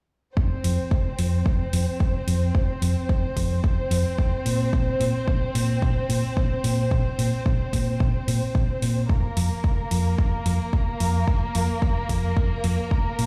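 A steady, straight groove drives this cosmic, groovy nu-disco snippet, cut from a longer piece, with a punchy, up-front electronic kick and layered, metallic electronic hi-hats sitting quietly beneath it. A hollow-body short-scale electric bass, played with the fingers, supplies a round, amped low end that pumps through sidechain compression. Above it, a dark studio violin section holds bowed, sustained chords with vibrato, its close, woody ensemble tone pulsing with the same sidechain pumping. The harmony moves from an F power chord to Bbsus2 at 4.5 seconds and Fsus4 at 9.1 seconds. The whole recording sounds as if it is played through a big sound system in a bare stone room, with a reverberant ambience hanging around the groove.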